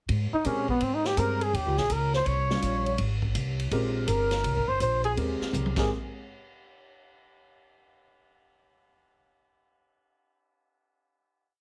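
Upright bass and a swinging drum kit open this short, relaxed small-group jazz piece. The bass walks in pizzicato with a woody, up-front tone, while the distant, roomy kit keeps a ride cymbal pattern over a boomy kick. A breathy trumpet enters almost at once with a bebop-style theme, its scooped notes and vibrato sitting up front, and a very quiet alto saxophone doubles it an octave away with a mellow, smooth edge. A baby grand piano joins with syncopated comping in drop-2 voicings, giving the sophisticated harmony a warm, natural color. A drum fill at 5.5 seconds leads into a final hit at 5.9 seconds, and the whole recording carries light reverb and a heavily compressed, radio-like sound.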